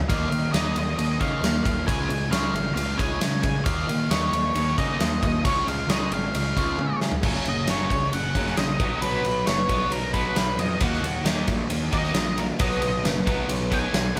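A dark octave-fuzz lead guitar carries the melody and takes a solo from 7.2 s in this anthemic, cathartic quiet-loud alternative rock excerpt at 134 BPM. It is driven by an up-front big-room drum kit with a tight kick and a growly, fuzz-overdriven picked bass, while a bright overdriven electric guitar riff gives way at 7.2 s to a tight distorted guitar riff in the background. Beneath them, a boxy old ladder-braced acoustic guitar picks arpeggios with audible finger squeak, and the band is heard playing live in one room with moderate reverb.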